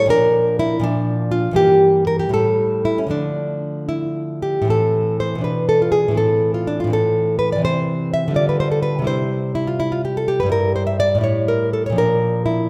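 In a rubato 6/8 at 82 BPM counted in dotted quarters, this introspective, grave baroque-style dance for solo nylon-string guitar, cut from a longer piece, sets a bright, small, fingerpicked tone up front in a wet recital hall, moving from D minor through Bb, A7 and Dm before shifting to A minor at 4.7 s and wandering through C, Gm6 and A5 to close on Bb at 12.0 s.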